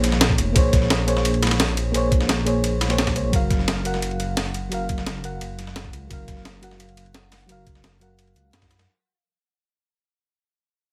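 A barely audible electronic downlifter opens this rolling, lush liquid drum and bass excerpt alongside a mellow FM electric piano, a dark detuned saw bass and two sampler-style drum kits, with a thumpy, pitched-up electronic kick joining at 0.3 seconds. The electric piano plays soft, round, vintage chords that warble through chorus, tremolo, cassette tape character and digital delay, moving from Bbm9 to Gbmaj7 at 3.3 seconds. Beneath it, the up-front sawtooth bass is deep and rumbling, its detuned unison voices beating over a sine layer. The up-front breakbeat kit brings a gritty, compressed hi-hat and snare, while a quieter dusty soul kit adds an overdriven hi-hat, ride cymbal and snare thinned by high-pass filtering. A light reverb surrounds the mix, and the whole passage fades out across its length.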